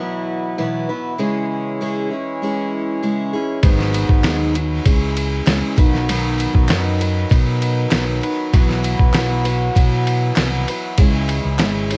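A bright, up-front picked steel-string acoustic guitar with audible finger squeak and a reedy, breathing harmonium open this anthemic indie folk excerpt in E major at 98 BPM, before a dark, round fingered electric bass and a gritty, compressed soul sampler-style drum kit with a thumpy kick, fat snare and ride cymbal arrive at 3.6 seconds, joined by a very quiet jingly tambourine and crisp group handclaps in the background, all captured dry on a home cassette recording.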